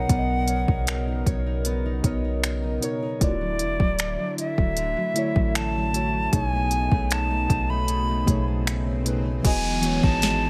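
Dreamy and tender, this short contemporary R&B excerpt at 77 BPM sets a pure, vibrato-laden silver concert flute with delay up front over muted, felt-like synth keys with chorus and tremolo, a shimmering pulse-width pad, a fingerpicked steel-string acoustic guitar, a round, dark 808-style bass and a crisp, overdriven drum kit with finger snaps, as the chords move from Bmaj9 through Dmaj9 and B13 to Emaj9 at 9.4 seconds, with a swell and downlifter arriving at 8.6 seconds in a dry mix.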